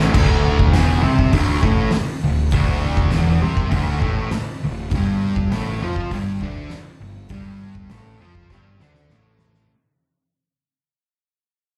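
Heard through a club's PA with the venue's reverb hanging over it, this short cut from a longer garage rock performance sounds raw and rowdy, and it fades out across its whole length. At 100 BPM in a straight 4/4, a double-tracked fuzz guitar sits up front, its distorted, picked riff ranging from D2 to F4 and moving from a D5 power chord to G5 at 4.9 seconds. A low-tuned, oversized acoustic drum kit is just as forward, with a boomy kick, a fat snare, dark cymbals and hi-hat, all saturated and gritty inside a big, pumping room. Beneath them, a picked electric bass with overdrive and fuzz stays in the background, its round, punchy tone running from D1 to F2. The drums play a fill from 8.5 seconds to the end.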